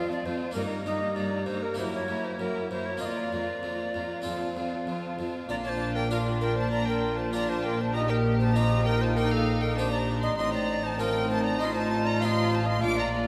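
At 98 BPM in Bb major, an airy tenor recorder with a crisp, chiffing attack carries the melody over a baroque-style concerto texture, where a close violin section sings higher and a lush, focused second violin line, a flemish-style harpsichord, an expressive viola section and a smooth cello bass fill in beneath. At 5.5 seconds a distant double bass section joins the bass line as the harmony settles on Bb, giving this brilliant, festive fragment of a longer movement more weight. A concert hall reverb with a long 2.2-second decay surrounds the ensemble, and the recording is tuned slightly below standard pitch.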